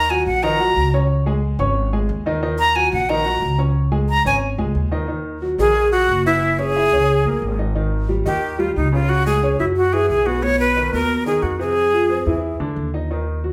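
Driving and sultry, this jazz excerpt in straight 4/4 puts a breathy, bright metal flute in front as the melodic lead, with a gently vibrating tone, soft attacks and an expressive, close-miked presence. Beneath it, a warm upright piano supplies the accompaniment with a woody, smooth and vintage character and short, clipped sustain. A pizzicato upright bass on gut strings adds a dark, thumpy foundation, and it sits just as far forward as the other two parts. The flute takes a solo over the opening stretch until 5.1 seconds, and the harmony then moves through a more restless series of chords before the flute drops out at 12.6 seconds, leaving piano and bass to carry on to 13.5 seconds. The trio plays live together in one large studio, wrapped in a noticeably wet reverb that gives the close, intimate instruments a roomy glow.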